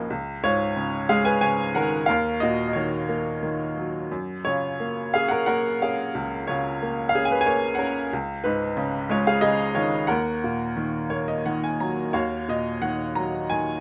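In a rubato triple metre, this short excerpt from a longer classical piece offers lyrical solo piano in a hopeful, relaxed mood. A bright, woody upright piano sits up front with a polished, long sustain under light reverb, ranging from low C#2 to A#5 over chords such as C#sus2, D#m and F#maj7. A fill from 10.8 to 12.2 seconds leads into a brief closing passage that settles on Ebm11.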